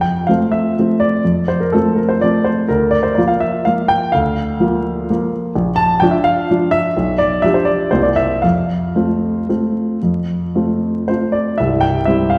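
Classical piano waltz in F major, graceful and sparkling, drifting between 109 and 131 BPM in a rubato 3/4, played by a clear, intimate solo grand piano with audible action noise and short sustain, set up front yet heard from further back in a wet scoring-stage reverb with vinyl crackle, moving from F through Bb/D and G7/B to C7 before settling on F at 8.4 seconds and turning to C at 11.6 seconds in this cut from a longer piece.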